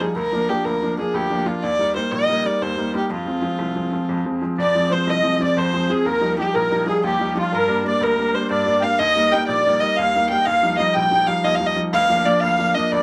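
Set in a small room with moderate reverb, this driving, dark and lively Celtic folk number in 9/8 is cut from a longer piece and opens with a single bowed fiddle up front, nasal and woody with light vibrato, over a bright upright piano whose audible action noise and long sustain give the accompaniment an intimate, polished presence. At 4.6 seconds a reedy musette accordion joins with a shimmering second line in the same register as the fiddle, thickening the tune through to the close at 13.0 seconds over chords that move from Bb/D through Eb, Fm, Ebadd9 and Gm.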